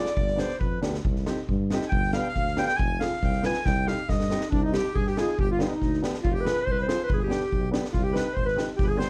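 A straight 2/4 pulse at 139 BPM pushes steadily faster through this bittersweet, soulful klezmer fragment in C harmonic minor, led by a mellow, smooth-topped, classical-style clarinet that solos for the first 4.5 seconds while a reedy, full accordion with dry tuning carries a second line. Beneath them, a dark, woody upright piano plays accompaniment, and a jazz-inflected tuba with light vibrato holds the bass over an up-front, big-room street-band drum kit of boomy kick and high-tuned snare that breaks into a fill at 3.7 seconds. The chords move among Cm, G and Fm, and the production is dark and warm, with little reverb.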